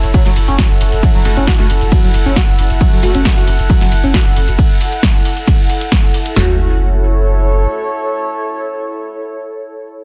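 A straight, driving 4/4 pulse at 135 BPM anchors this dark, hypnotic peak-time techno cut in F# minor. A heavy kick, punchy snare and toms from one electronic kit join hi-hats, ride, shaker and snare from a second, both tape-hued and re-recorded in a small room, over a deep, thick, overdriven sub bass with sidechain pumping. A gritty, screaming, guitar-like lead with lush chorus and delay sits in the background, aggressive detuned rave stabs arrive at 1.3 seconds and return at 6.4 seconds, and a mellow, warbling, nostalgic pad carries on to 9.5 seconds, all within a dense, heavily limited master.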